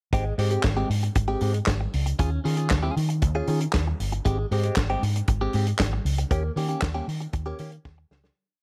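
Disco in Ab major at 117 BPM, joyful and glamorous, with a tight, mid-forward soul kit driving a four-on-the-floor beat with open off-beat hats and a snare layered with handclaps, a dark, foam-muted fingered bass playing round octave lines with slides, and a bright, scooped, compressed clean guitar chopping sixteenth-note chords through a phaser over Abmaj7, Eb9sus4 and Eb7, all set in a small room before fading out from 6.3 seconds into a closing drum fill at 7.9 seconds.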